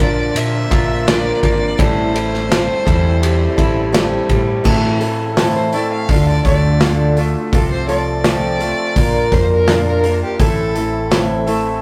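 A reflective, dusty folk rock and heartland rock excerpt at 84 BPM in a straight 4/4 opens with the full band at once: a rich, focused fiddle carrying the melody over a boxy, picked acoustic guitar with audible finger squeak, while a very quiet musette accordion holds reedy, shimmering sustained chords underneath. An electric guitar through a small old amp plays a slightly broken-up, lo-fi riff colored by phaser, and a hollow-body short-scale bass gives a dark, round low end. The natural country drum kit sits up front with a punchy kick, medium-tuned snare and dark cymbals across hi-hat, ride and crash. The harmony moves from Bb to Am7, then at 4.7 seconds the fiddle takes a solo with light vibrato over a passage moving through Am, Dm, F/C, Bb and back to Am. The rough rehearsal-room sound carries tube saturation and moderate reverb, giving the whole a lived-in, unpolished character.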